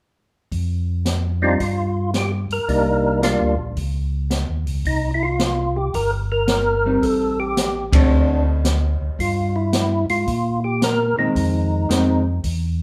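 A swung 4/4 groove at 111 BPM drives this late-night, bluesy soul jazz organ trio in C minor. An open acoustic kit with boomy kick, medium-tuned snare, hi-hat and dark ride sits under a round, mellow organ bass line, and from 1.4 s a fat, percussive second organ takes the melody with key click and third harmonic percussion, both organs colored by chorus vibrato and slow rotary speaker. A picked hollow-body electric guitar adds clean accompaniment from 6.9 s, the band hits an accent at 7.8 s, and a club reverb places the group a little back in the room.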